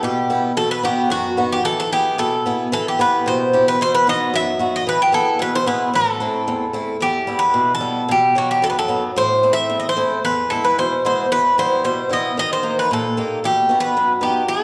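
A metallic Greek bouzouki with double, partly octave-doubled strings carries a brooding, cool picked melody up front, backed by a bright, boxy swing-style acoustic guitar, in this 112 BPM Greek folk fragment in 2/4 that moves between E minor, B, E and A minor chords, shifts to a second section at 7.0 s, and sits in the lingering reverb of a recital hall.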